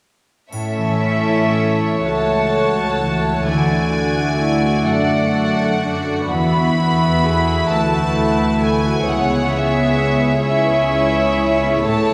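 A rubato 6/8 sway at about 39-45 BPM carries this tender, moving cinematic film-score fragment in A major: a clear, floating violin section sings the melody above a soft-edged, smooth-topped second violin line, sul tasto violas, an intimate cello bass with light vibrato and ringing fingerpicked harp arpeggios, the harmony moving through A, Dadd9, Esus4 and C#m7 in a reverberant hall, while a close, dry triangle glints only from 0.5 to 2.5 s.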